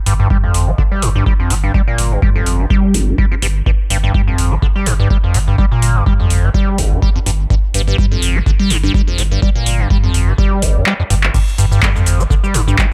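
A squelchy, resonant square-wave acid riff leads this raw, driving acid house excerpt in G minor at 125 BPM, sitting up front with phaser, overdrive, analog chorus, tape echo, a filter sweep and sidechain pumping, while a round sine sub bass pumps beneath it. An analog drum machine brings metallic hats, handclaps, shaker and crash cymbal, joined at 0.3 s by a deep electronic kick, all with a 16th-note swing. The kick drops out from 10.9 to 11.3 s for a drum fill, and the dry mix stays close, with little reverb.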